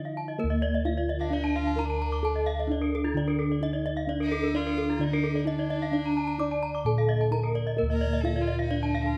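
A bronze metallophone carries the melody from the opening moment of this Balinese gamelan excerpt, its padded disc mallets giving a mellow, soft, ringing tone with the shimmering beats of paired tuning and a vintage, band-limited color. Bossed gongs hold the bass alongside it, round and beating under padded beaters, sitting up front with a boxy small-room character. Two more bronze metallophones spin arpeggios above, struck with horn mallets: one dark and smooth, the other bright and airy, both shimmering from their paired tuning. At 1.2 seconds a single bowed fiddle joins with a second line, its rich, nasal, earthy voice carrying light vibrato and an airy bow. The music moves at 130 BPM in a straight 4/4 in D pelog, with light reverb and close, detailed microphones, and the overall mood is hypnotic and brilliant.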